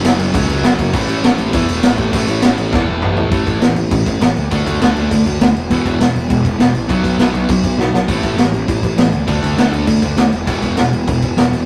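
A rough rehearsal-room recording with tube saturation and light reverb captures this short, energetic and upbeat punk rock cut, taken from a longer piece and driving along at 201 BPM in a straight 4/4. A sludgy, overdriven electric guitar, double-tracked and warm, plays the riff across the whole stretch, moving through power chords from F#5 and A5 at the start to D5, E5 and B5 later on. Up front beside it, a picked electric bass with growly, bright fuzz and overdrive holds down the low end from E1 to E2. The raw garage drum kit also sits up front, an acoustic set in a small room with a boomy kick, medium-tuned snare, crash and toms, its sound gritty and saturated with a rolled-off top. A drum fill from 2.7 to 3.3 seconds leads out of the opening section into a longer second one, and another fill lands at 7.8 seconds before the piece cuts off at around 11.6 seconds.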